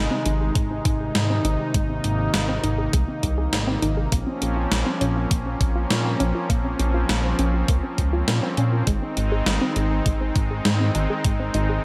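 Moody and nocturnal, this synthwave excerpt from a longer piece moves in a straight four-four pulse over a chord shift from Ab to Bbmadd9 and back. Up front, a brassy, bold analog pad holds sustained chords with a detuned, warbling sawtooth tone, carrying chorus and vibrato, pumped by sidechain and washed in shimmer reverb. A glossy, nasal chorused synth bass sits up front too, built on pulse and sawtooth waves with a dark edge and the same sidechain pumping. Further back, a lush, punchy unison pluck plays arpeggios through delay and shimmer reverb while a filter sweep runs across it for the whole passage. A gated 80s digital drum machine brings hi-hat and a gated-reverb snare in at 0.3 seconds, joined at 0.6 seconds by a thumpy, tape-colored electronic kick, both sampler-style and re-recorded in a small room. The whole mix sits in a light, digital ambience.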